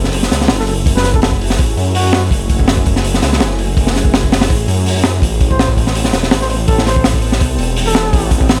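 Frenetic yet nostalgic, this drum and bass cut with jungle roots runs at 165 BPM in F# minor, driven by a crunchy, saturated breakbeat kit with a punchy kick and high-tuned snare sitting up front alongside a thick, beating detuned saw bass that feels menacing. Behind them, a cloudy granular pad holds blurred, evolving chords moving from F#m9 to Am9 at 5.2 seconds, bathed in its own built-in reverb. A veiled trumpet with a bucket mute plays a jazzy solo melody with light vibrato and scooped notes, entering at 0.6 seconds and returning at 5.5 seconds, trailed by dub echo.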